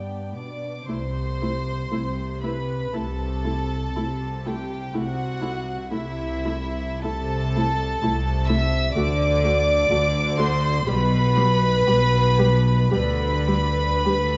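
Up-front, clear double basses enter at 0.9 s beneath dark, floating cellos, woody violas and intimate sul tasto violins with light vibrato carrying the melody and a second line in this slow, tender romantic movement for string orchestra at 60 BPM with a rubato feel, set in a moderate scoring stage reverb.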